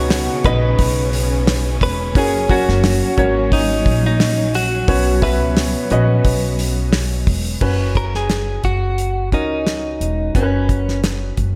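Piano-driven pop at 88 BPM with a gentle sixteenth-note swing, this anthemic, hopeful passage pairs a clean, compressed electric guitar melody carrying subtle chorus with a clear, polished baby grand piano under analog chorus, while a lush bowed string section holds expressive chords with vibrato and portamento until 7.6 seconds, a woody, thumpy upright bass and a dry, damped 70s drum kit with tight kick sit up front, and moderate plate reverb in a small room gives the mix a dreamy sheen.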